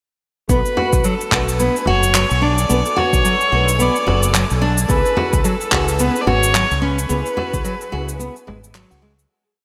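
Warm and earthy, this short organic downtempo piece sways at 109 BPM with a swung 16th feel in B dorian, as a rich, up-front bowed kamancheh sings a vibrato-laden, gliding melody with digital delay over a fingerpicked nylon-string guitar arpeggio, soft felt-muted upright piano chords pumping with sidechain in the background, a round, dark fretless bass in a dotted rhythm, an overdriven electronic kick and layered electronic cabasa and handclaps, a deep frame drum played with soft hands, and a twinkling granular shimmer that enters at 1.2 s, all moving from Bm7 to C#m7 in a lush hall with a bright 1980s-style digital sheen before the kick drops out at 7.6 s during a fade-out that begins at 6.4 s.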